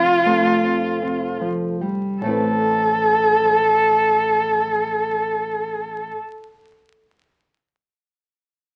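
A rich, bowed cello leads this brief folk fragment cut from a longer piece, sung by one player up front with vibrato, soft attacks and expressive portamento as it moves between F4 and A4 until 6.1 seconds. Beneath it, a small, fingerpicked nylon-string guitar supplies warm acoustic accompaniment across a span from A2 to A5, carrying on alone until 7.0 seconds. A deep, round electric bass, fingered and punchy with a dark, direct amped tone, sits in the background in its low register. In A minor and straight 4/4 at roughly 73-82 BPM, the music slows down over its first 2.2 seconds on an Fadd9 chord before settling onto Amadd9 at 2.2 seconds. The mood is intimate and heartbroken, heard through a wet studio reverb and the crackle of a very old 78 rpm record that dulls the top end.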